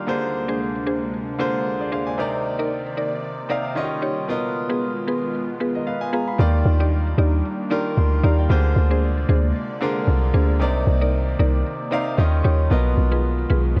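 A swung sixteenth-note amapiano groove in 4/4 sets a soulful, relaxed mood in this fragment of a longer piece, where a bright, intimate concert grand piano with audible action noise plays accompaniment over an airy, breathy pad with chorus and woody, mallet-like synth pluck stabs touched with chorus and delay, and then a deep, round log drum bass joins up front at the drop at 6.4 seconds, while the mix carries light digital reverb and the warbly pitch drift of worn cassette tape.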